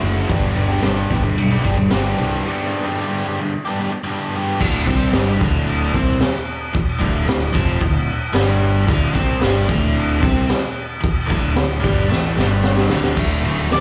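Swaggering and rowdy, this garage rock excerpt at 112 BPM in D mixolydian pairs a biting, double-tracked overdriven guitar riff with slapback echo against a round, fuzzy picked electric bass and a gritty raw drum kit with a boomy kick and high-tuned snare, while a jingly tambourine sits in the background, a break arrives at 2.5 seconds, a drum fill runs from 12.1 seconds, and a dark octave-fuzz lead guitar cuts in on a single high note at 13.7 seconds, the whole performance heard live through a club PA.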